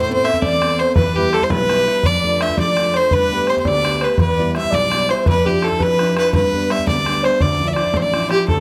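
Close, detailed microphones and a moderate studio reverb give this short passage from a longer Celtic jig a present, intimate sound. A clear fiddle sits up front with the melody, its nasal, earthy tone carrying light vibrato and an airy bow, and a touch of tape echo trails behind it. Just behind, a breathy baroque flute plays a second line in the same register, its wooden, mellow straight tone softened by a gentle attack. A concert grand piano supplies accompaniment with deep bass and long sustain, moving through chords from Amadd9 through Em, Gadd9 and G before settling on Dmadd9. A boomy, distant bodhran, heard as if in a large room, drives the straight 6/8 pulse and gives the whole a spirited, forward-pressing mood.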